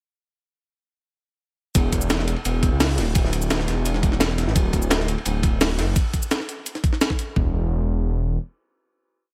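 This short liquid drum and bass piece opens directly on its drop at 1.8 s, where a dark detuned saw bass and three layered drum kits arrive together in a dreamy, melancholic mood. The bass is deep and rumbling, its unison sawtooth voices beating against square and sine tones, and it plays long gliding notes that sit up front with a fast attack and sustained body. An overdriven pop kit supplies a knocking two-step kick and floor tom, while a compressed, sampler-style breakbeat kit adds gritty rolling two-step drums, with closed hats, shaker and a high-tuned snare, also placed up front. Beneath them, a quieter crunchy breakbeat kit brings a looped, edited acoustic break with dark cymbals, a medium-tuned snare and a saturated, rolled-off top, heard until 5.9 s. The drums fall away by 7.4 s, leaving the bass to carry the final note until 8.4 s, all in a dry mix with little reverb.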